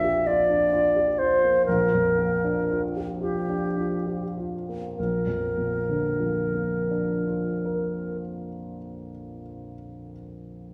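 Impressionist classical music in a pastoral, luminous mood: a fragment of a longer piece for flute and piano in Bb major, in a rubato 6/8 at 32-45 BPM counted in dotted quarters and tuned to A4 = 444 Hz, in which a pure, straight-toned concert flute with a crisp attack sings the melody up front between G4 and E5 over a warm, long-sustaining baby grand piano accompaniment spanning Bb1 to Bb4, also up front, slowing down across the opening Bb6 chord before moving to Bb at 5.0 s, with the flute stopping at 8.2 s while the piano continues alone to 10.7 s, all set in a wet recital hall reverb heard from further back in the room.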